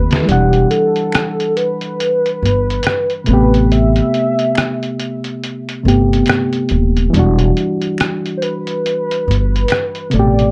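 A woody, plucked upright bass sits up front in this nostalgic, melancholic lo-fi hip hop excerpt at 70 BPM in E minor, with 16ths swung as the chords move from Em9 to Am9 and back. A barky, reedy electric piano plays clean accompaniment through its built-in speakers, while a velvety sawtooth synth lead carries the melody with chorus and vibrato. A muffled, pitched-down sampler drum kit with hi-hat, rim click and a fat snare opens with a fill at 0.0 seconds and drops its kick from 0.3 seconds, very quiet close finger snaps join at 1.1 seconds, and a small room and dark production shade the whole mix.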